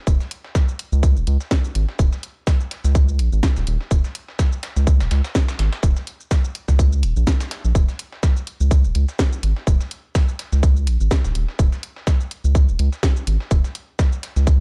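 A tight, up-front electronic kick, a round, wave-folded analog bass with sidechain pumping, a garage drum kit of bright hats, shaker and cracking snare, and a gritty, compressed soul sampler-style kit with a fat snare, tambourine and pumping hats set back in a large room all enter together at 0.1 s in this quirky, hypnotic minimal techno excerpt at 125 BPM with a light 16th-note swing, all within a dark digital ambience.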